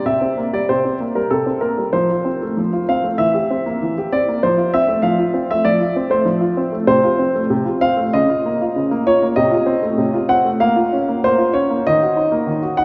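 A long, wet cathedral reverb of about 5.2 seconds surrounds this recording, which sounds as if it were captured in a church or concert hall. It is a short, cheerful and elegant passage from a classical-period piano sonatina in 4/4 at 97 BPM, played with a rubato feel. A solo concert grand piano carries the whole excerpt, sitting up front with a clear, smooth tone, a deep bass and a vintage character across a range from C3 to Gb5. The harmony opens in F major, moving from C5 through F and C7/E. At 6.9 s it turns toward Bb minor, passing through F/C, Bbm/Db and F7/C before reaching Bbm and then Ebm at 11.9 s, so the graceful opening takes on a darker shade.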